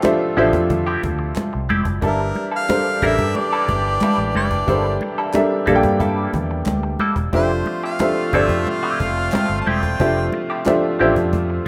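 This short cut from a longer piece has a rough home-demo sound with light studio reverb, giving a lush 1970s-style soul groove a silky, cinematic mood in a straight 4/4. An up-front baby grand piano carries the accompaniment with a warm, natural tone, while a bright, twangy clean electric guitar, recorded direct and compressed, plays a picked riff through wah and spring reverb. A tight, vintage-sounding horn section adds clear stabs with light vibrato. The rhythm bed pairs a snappy cajon struck with hard hands against thin-skinned, medium-tuned congas played with soft hands, with a very quiet, hollow group handclap underneath. A dark, round, foam-muted fingered bass enters at 0.4 seconds with punchy weight, and from 2.1 seconds a solo harmonica sings the melody with scooped notes, light vibrato and a smooth top over harmony that moves from Dm11 to Gm69 and back.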